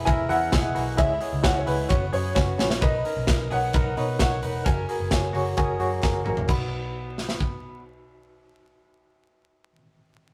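Youthful and nostalgic, this short jangly indie pop excerpt in B major moves at 131 BPM, with a bright, woody upright piano carrying the melody over a reedy, slightly out-of-tune electric piano with tremolo, twangy clean guitar arpeggios, a dark, round muted bass, punchy up-front drums with fills at 2.4 and 6.0 seconds, and barely audible crisp handclaps, all set in a rough rehearsal-room sound with tube saturation, vinyl crackle and light reverb.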